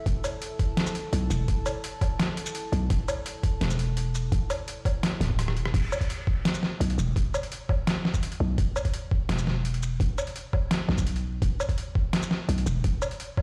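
A half-time pulse at 169 BPM drives this heavy, cinematic drum and bass fragment, where a gritty, overdriven, pitched-down sampler-style kit of snare, hi-hat, rim click, shaker, woodblock and crash sits up front beside a thumpy electronic kick and a growling, buzzy 808-style bass, while a dark, detuned analog pad with chorus and sidechain pumping holds sustained chords until 5.7 seconds, just after a drum fill begins at 5.4 seconds, in a dry mix with the stony character of a bare room.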